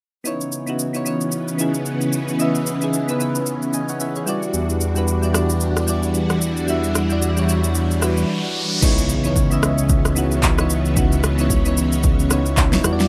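Amapiano at 112 BPM in C# minor with a swung 16th feel, hypnotic and late-night, this cut from a longer piece sets soft, round electric-piano-like synth keys with chorus against shimmering, vintage string-machine violins holding sustained chords over C#m9 and Em9, while an up-front deep house kit of punchy kick, fat snare, rim click, handclaps, shaker and crash drives the groove, a thick, detuned sawtooth analog bass joins at 4.5 seconds, and a background riser leads into an impact at 8.8 seconds, the whole set in a rough home-demo mix with light reverb.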